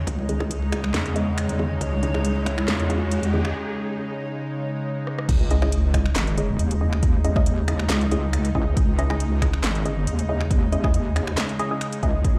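Heavy and cavernous, this deep dubstep cut rolls along in a half-time feel, heard as if through a big sound system in a bare room with a large studio reverb. Up front, a saturated, detuned wobble bass with chorus holds the low end throughout. Above it sit a tense, string-like drone with vibrato and a muted, evolving dub chord stab passed through phaser and dub echo. The opening build-up adds a reversed, dreamy swelling texture and soft-handed vintage congas in the background, both gone by about 3.5 seconds. A background riser and sub drop carry the build into a brief break, while the overdriven, deep electronic kick falls away before returning at the drop at 5.3 seconds. A garage kit of cracking snare, metallic hats, snaps, claps, rim clicks and crash keeps a tape-tinged pulse from start to finish, and a drum fill just before the drop leads into a heavy impact.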